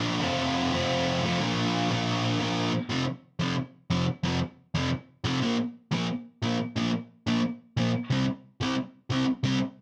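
Urgent and raw, this short punk excerpt drives at 179 BPM in a straight 4/4, cut from a longer piece. A single sludgy electric guitar carries it alone from 0.0 to 9.6 seconds, overdriven, picked and double-tracked, sitting up front in the mix with a warm tone. It ranges from F2 up to Bb4, opening on F and Bb before shifting at 2.9 seconds into a stretch built on F5, Bb5 and C5 power chords. A moderate studio reverb gives the sound a short, tight room around it. The tuning sits just above standard pitch, at A4 = 441 Hz.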